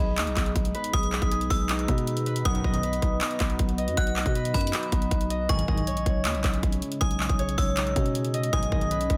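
A bright, fingerpicked Celtic harp plays ringing arpeggios with delay from the first moment, joined by a growling, buzzy 808-style bass and a metallic, inharmonic FM bell. The bell carries a second line high above, with chorus and delay. This is a triumphant yet wistful trap cut with a half-time feel, taken from a longer piece. A trap drum kit of hard-clipped kick, bright hi-hats and handclaps arrives up front almost at once. A deep, moody analog pad with detuned sawtooth tones, chorus and phaser sustains chords in the background over a progression moving from Emaj7 through B and C#madd9 to G#m/B. A barely audible electronic impact flickers just after the opening, and fat, warbling analog synth brass punches in with short, bold stabs at 2.5, 5.5 and 8.5 seconds, colored by chorus and tremolo. The sound is dry, dense and heavily limited in a modern master.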